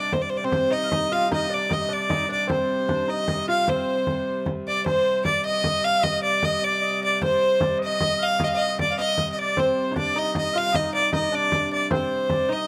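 Recorded outdoors with a light reverb, this short portion of a longer medieval dance in C minor moves at 102 BPM in a straight 6/8, its mood mysterious and driving. Up front, a clear, smooth, close fiddle carries the melody with light vibrato, while a distant, roomy shawm in folk style adds a second line from the background, with scooped notes and similar vibrato. A delicate, fingerpicked lute with gut double strings plays another second line, dropping out at 4.4 seconds and returning at 9.6 seconds; it shares a slapback echo with the fiddle and shawm. Beneath them a biting, earthy hurdy-gurdy holds a wheel-bowed drone with an airy bow, and a deep, large frame drum played with soft hands supplies the percussion. The opening section repeats once, starting again at 4.9 seconds.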